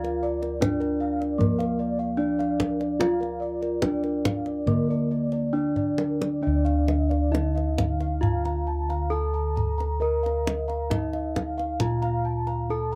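A dark, close and fairly dry sound frames this stately, shimmering piece of Javanese gamelan in D pelog, moving in a straight 4/4 at roughly 67-79 BPM, cut from a longer performance. Up front, a bronze metallophone struck with a wooden mallet carries the melody with a ringing, boxy tone, while a bass line of close-miked bossed gongs sounds round, full and dry, their beating bronze tones reaching down to D2. Higher up, a second metallophone played with padded disc mallets spins arpeggios, its paired tuning producing mellow, airy beats that shimmer. Another set of bossed gongs adds its own dark, smooth arpeggios in the same upper register, sitting lower in the mix. The kendang drives the pulse with deep, hard-handed strokes, and its fill from 5.8 to 6.4 seconds ushers the piece into a new section that runs to the end of the passage.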